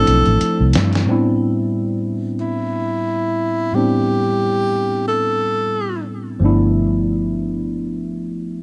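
Introspective and soulful, this short neo-soul R&B passage in A minor moves at 90 BPM with a lightly swung 16th feel, opening on a gritty, fat-snared sampler-style drum fill of hi-hat and snare that ends at 1.1 seconds, while a breathy, close-miked tenor saxophone carries a jazz-style solo melody with scooped notes and tape echo until 6.0 seconds over a worn, slightly out-of-tune tine electric piano with analog chorus and a round, foam-muted fingered electric bass that drops out after the opening and returns at 6.4 seconds, as the harmony moves from G13sus4 to Am11 to G13 within a dark production touched with light reverb.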